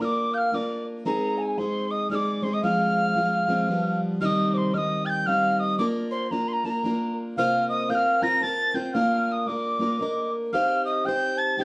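Heard from further back in a wet studio room, this fragment of a longer Celtic folk waltz feels dark, lively and driving, with a swung lilt in three. A mellow wooden whistle carries the melody with airy chiff, a soft attack, vibrato and a slightly unsteady quality, while a hollow clay alto ocarina plays a tongued second line, both sounding distant. Up front, a picked, plugged-in steel-string parlour guitar with fresh strings gives a warm acoustic accompaniment, and the harmony turns to a minor chord at 4.2 s as the tune moves into its second section.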